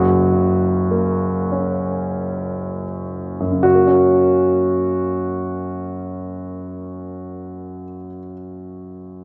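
Peaceful and calm, this short passage cut from a longer classical work features a single grand piano in a lyrical solo setting. It moves in a slow, flexible 6/8 at roughly 25-38 BPM counted in dotted quarters, with rubato phrasing and a gradual slowing through the first 3.6 seconds. The piano sits up front with a warm tone and long sustain, ranging from F#1 to F#4 in F# major and opening on an F# chord. A new section begins at 3.6 seconds, and the piano plays on until 9.2 seconds. A generous scoring-stage reverb, about 2.0 seconds long, surrounds the instrument and lets each note bloom into a spacious, glowing haze.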